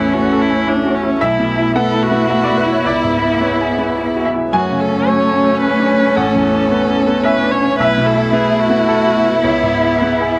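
A small chamber ensemble of piano and strings begins together in this reflective, melancholic neoclassical excerpt, moving in a rubato 3/4 at 110 BPM. Up front, a dark, woody violin section carries the melody with vibrato, while a single cello, set distant, adds an expressive second line with portamento. A brilliant baby grand piano with short sustain plays the accompaniment close to the listener, joined by one smooth, even viola. Beneath them, a very quiet analog pad holds slow-attack sawtooth chords, detuned and chorused. The harmony moves through Aadd9, Esus4/B, C#m7 and F#m before circling back. The dry, closely miked sound keeps each part detailed until the piece is cut at 10.4 seconds.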